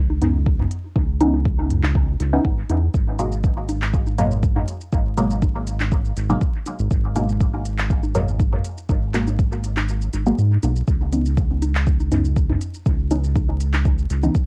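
Dub techno with a hypnotic, meditative pull, this excerpt rides a deep, up-front electronic kick and a round, dark analog bass pumping against the sidechain, while a muted, filtered dub chord stab with phaser and cassette grit moves from C#m9 to G#m9 and back. A deep house kit of handclaps, smooth hats and shaker sits lower in the mix with dub echo, and overdriven electronic congas and toms stay in the background, trailing echoes of their own. Light reverb, the home cassette recording and vinyl crackle give a homespun haze, and the kick drops out between 9.9 and 10.9 seconds before returning.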